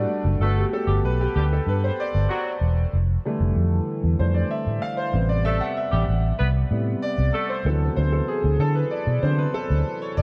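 Upbeat and glossy, this 95 BPM pop piece in G major, cut from a longer work, features a natural baby grand piano taking the lead from 0.4 seconds with long sustain and analog chorus over Gmaj9, Fmaj13, Am7 and D13, anchored by a round, punchy, foam-muted fingered electric bass up front, while a mellow, jazz-style horn section with light vibrato adds a vintage second line until 7.6 seconds, all set in light reverb with a dark, warm production.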